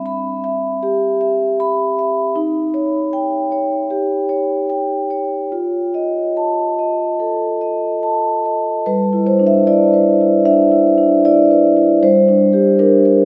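Contemporary classical for solo vibraphone, cut from a longer piece, this playful, warm passage moves at about 74 BPM in 4/4 with an uneven, rubato pulse and is tuned to A4 = 444 Hz. Played with soft mallets and the motor off, the vibraphone has a mellow, metallic ring, moving through Cmaj7, Eb7 and F7 before shifting at 8.9 seconds to G6 and settling on Csus2/G. A long, wet cathedral reverb surrounds the instrument, which is heard from further back in the room.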